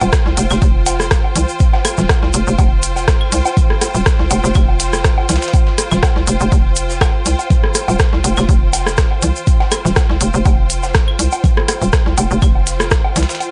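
Cool and hypnotic, this minimal techno excerpt runs at 122 BPM in 4/4 with a light swing on the sixteenths. A deep, up-front electronic kick anchors the groove alongside a hollow, bouncy FM bass that knocks with a fast attack and pumps against the sidechain, moving between Eb1 and C2. Clicky hi-hats and rim clicks from a minimal electronic kit sit over a gritty, compressed sampler-style kit of hi-hat and medium-tuned snare that stays in the background, filtered and set in a large room. Overdriven electronic woodblock, claves, rim click and congas carry delay and a small-room character, while a grainy, mellow tube shaker sits close and dry. A rich studio string section, bowed with vibrato and also pumping, holds a focused texture from F4 to G5 across the whole 13.5 seconds. The mix is dry, with little reverb and a top end that stops short of the brightest highs.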